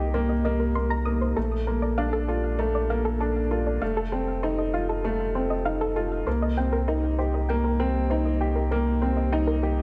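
An upright piano and a deep sub bass open together at 0.0 s, the piano playing a worn, woody, slightly detuned riff up front with short sustain and a digital delay, while the round sine bass sits low and sustained beneath it. At 0.1 s a soft, gentle pluck joins with mellow arpeggios, its blend of triangle, sine and sawtooth tones with a noise layer given chorus and digital delay, and a filter sweep runs across this synth sound for the whole passage. The electronica piece moves at 98 BPM in a straight 4/4, in C dorian, with the harmony shifting from Cm7 to Bbmaj7, then F7, and back to Cm7. The mood is melancholic and hypnotic, with the pluck floating high above the piano and bass. A moderate recital hall reverb with a 1.5 s decay surrounds the mix, and this short cut from a longer piece runs to 9.8 s.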